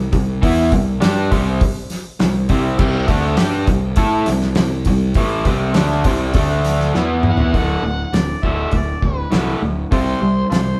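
A raw, double-tracked garage guitar sits up front, bright and overdriven, picking a swaggering classic rock riff at 101 BPM in a straight 4/4. Underneath, a dark fuzz bass, round and punchy, holds down the low end, while a cloth-damped drum kit with a fat snare, tight kick and rolled-off top thuds along on hi-hat, crash and toms. The chords move from C5 through D5 and E5, and a drum fill at 6.9 seconds leads into a second section built on D before returning to C5. At 7.3 seconds an amplified, gritty harmonica takes a confident solo, with light vibrato and tongue slaps. The band sounds as if it is playing live in one large studio room with a moderate reverb, and this short cut from a longer piece feels swaggering and self-assured.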